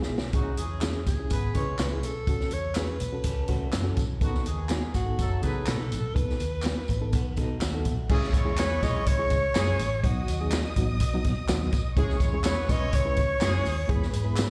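A breathy, close-miked alto saxophone with a jazz-style vibrato carries the melody of this urgent, driving 1960s-style soul cut. It rides over a punchy, up-front vintage drum kit, a round, foam-muted fingered bass and a worn, slightly out-of-tune reed electric piano with fast tremolo and slapback echo, while a tight, distant horn section in octaves adds a second line and tambourine and handclaps sit in the background. A dark, slightly broken-up electric guitar plays a short picked riff at 3.2 and 7.1 seconds, a lush, bowed studio string section joins in the background from 8.1 seconds, and the band is heard through a venue's PA with recital-hall reverb.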